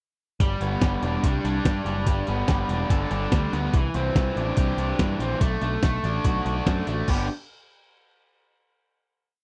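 Jangly, wistful indie rock at 144 BPM in G major, where a raw, overdriven garage guitar plays bright picked arpeggios over growling, driving eighth-note electric bass and a gritty, compressed sampler-style soul kit with a thumpy kick and fat snare in an indie four groove, the guitar and kit sitting up front in a dry, close 1970s-style studio sound as the chords move from G through Csus2, Gadd9, Cadd9 and Bm7 before landing on a final G chord at 7.1 seconds.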